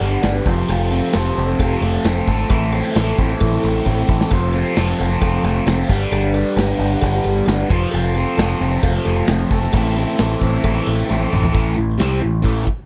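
A dry, close 1970s-style studio sound frames this swaggering, brooding classic rock excerpt in A minor at 133 BPM, its straight 4/4 riff moving through F, Am and G. Two bright, overdriven picked electric guitars carry the riff, one colored by phaser, over a growling, punchy overdriven bass set up front and a big acoustic rock kit with bright cymbals, tambourine, toms and drum fills at 3.9 and 11.1 seconds. In the background, a dark, woody twelve-string acoustic guitar shimmers with octave-doubled picking until 11.5 seconds, and a very quiet metallic cowbell sounds close and dry.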